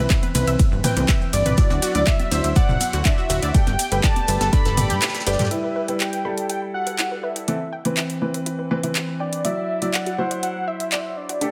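Progressive house at 122 BPM, driving and bittersweet, cut from a longer piece: a thick, detuned unison lead carries the melody over bright, warbling analog pluck arpeggios and clear, worn baby grand piano stabs, all pumping with sidechain and trailed by delay or tape echo, while a soft FM bell adds a brief second line, a punchy, funky analog bass, an up-front tape-warm kick, metallic-hatted house drums with handclaps and ride, a very quiet cloth-damped acoustic kit and background electronic congas and toms drive the opening drop until a band accent at 5.0 s, after which the kick, bass and other percussion drop away and the lead, pluck, piano and house kit carry on over chords moving from Em to Cmaj7 and Dadd9.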